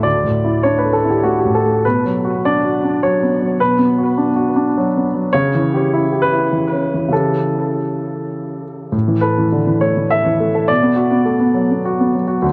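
Neoclassical minimalist piano at 102 BPM in 3/4, played with a rubato feel that gives this brief excerpt from a longer piece an intimate, hopeful mood. A clear baby grand piano plays solo throughout, spanning D2 to E5, its tone polished and present, sitting up front in the mix. Analog delay on the piano feeds an echo-heavy sound, further shaped by a moderate plate reverb with a 2.8-second decay and the grain of cassette tape. The harmony opens on Dsus2 and moves through Bm and A7/C#, then at 8.9 seconds a new section shifts to Asus2 before returning to Bm at 10.7 seconds. The open suspended chords and lingering echoes leave the phrase feeling unresolved and gently expectant.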